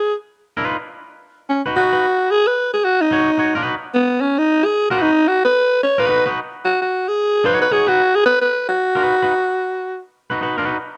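A dark, warm studio sound with moderate reverb frames this hypnotic, cool funk passage at 111 BPM in G# minor, swung on the sixteenths, where a raspy, growling alto saxophone with light vibrato takes a gritty, up-front solo from 0.7 seconds while a clean, twangy, picked electric guitar with spring reverb supplies accompaniment from 0.6 seconds over rootless C#9 and G#m7 chords.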